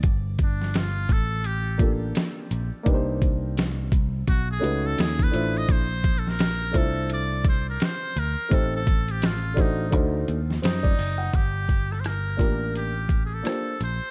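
A gritty, pitched-down boom bap drum kit with a thumpy kick and medium-tuned snare opens this mellow, smoky jazz-hop excerpt alongside a bright, amped picked electric bass, both sitting up front in a swung groove. At 0.4 seconds a buzzy, thin trumpet with a metal mute and light vibrato takes a jazz-style solo through a tape echo, and at 1.8 seconds a woody, vintage upright piano joins with intimate, short-sustained accompaniment and audible action noise. The harmony moves through rich extended chords such as Gm9 and Bbmaj9#11 before returning to Gm9 at 11.3 seconds, all set in a studio reverb with a dark, warm production.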